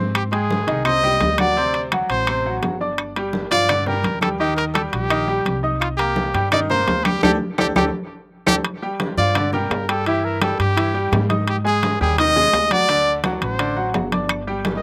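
A straight 4/4 salsa groove at 169 BPM, driven by ringing congas set distant in a large room, close, dry metal-shell timbales and woody claves in the background that drop out at 8.6 seconds, carries this passionate, danceable piece in G minor, where a clear, up-front solo trumpet sings over a bright, brilliant grand piano and a dark, thumpy pizzicato upright bass, with a band accent from 7.2 seconds capped by a drum fill, little reverb and a faint mains hum in the outdoor recording.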